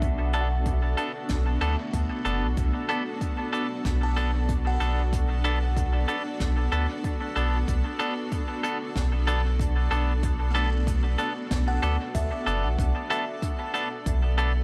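In a small room with light reverb, this deep, spacious ambient dub excerpt moves in a straight 4/4 over a Bm7 chord. A round, up-front sub bass anchors a cloudy, evolving granular pad of sustained chords, while a clean, twangy electric guitar plays compressed stabs with dub echo from 0.3 s, and a woody, buzzing kalimba plays filtered arpeggios with tape echo in the background until 13.0 s. A deep electronic kick, re-recorded in a small room, sits back in the mix beside a distant brush kit whose rolled-off hi-hat and snare trail dub echo.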